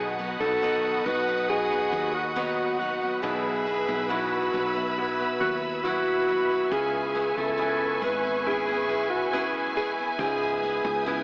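Melancholic and full of longing, this slow pop ballad at 69 BPM in C# minor sets a dark, subtone alto saxophone up front with a scooped, jazz-style melody, while a lush violin section with smooth vibrato carries a second line alongside it. In the background, a brilliant grand piano plays accompaniment, a dreadnought acoustic guitar picks arpeggios through a digital delay, a string section holds expressive bowed chords with portamento, and a round, growly fretless bass anchors the low end. The harmony moves from B to Esus2/B to C#m7, all bathed in a lush hall reverb and filtered through an AM radio sound.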